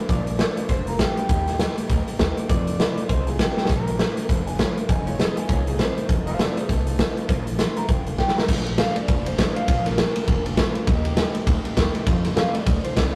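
Rockabilly with a rowdy, upbeat swing, cut from a longer piece: a gritty, up-front garage drum kit with punchy kick and pumping room sound fills at 3.5 and 8.2 seconds, while a twangy, slightly broken-up electric guitar carries the melody before taking a clean solo from 8.5 seconds, over a woody pizzicato upright bass and a full-bodied jumbo acoustic guitar sitting in the background, all caught in a rough rehearsal-room recording with tube saturation and light reverb.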